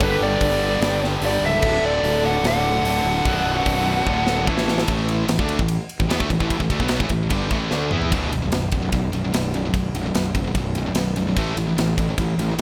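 In straight 4/4 at 148 BPM, this epic, aggressive heavy metal excerpt in B minor opens in half time, where a dark, high-gain lead guitar with digital delay carries the melody over a ringing, thumb-plucked concert harp line and very quiet, biting bowed strings moving through G, D and Bm, all backed by a double-tracked tight distorted guitar riff. The lead and harp drop out at 4.4 seconds, and after a drum fill the strings and tight guitar follow at 4.9 seconds, leaving two bright high-gain rhythm guitars riffing on A5 and B5 power chords beneath. Throughout, a growly, punchy fuzz bass and a polished, up-front drum kit with bright cymbals and a tight kick drive the piece in a small room ambience.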